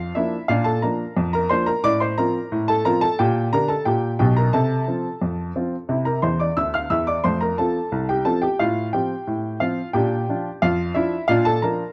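A dry, close studio sound with small-room ambience frames this lively, jaunty ragtime excerpt in F major at 89 BPM in 2/4, where a clear, woody upright piano with short sustain plays solo up front across a range from B1 to F6, slipping in a fill between 6.2 and 7.2 seconds as the harmony moves through Bb, F/A, Gm/Bb, F/C, C, F and F/A before returning to Bb.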